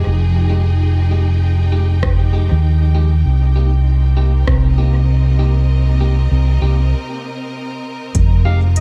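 An echo-heavy, spacious ambient dub mix at 98 BPM in F minor sets a meditative mood as a round, up-front fingered electric bass and distant, lush bowed strings hold Fm9 and Cm7 beneath slightly broken-up electric guitar stabs trailing dub echo, while a punchy, layered electronic kick and a tape-warm electronic kit of smooth hi-hats and rim clicks, also washed in dub echo, enter at 2.0 s, a break arrives at 6.9 s, and a vintage, classical-style clarinet melody appears only at 8.5 s.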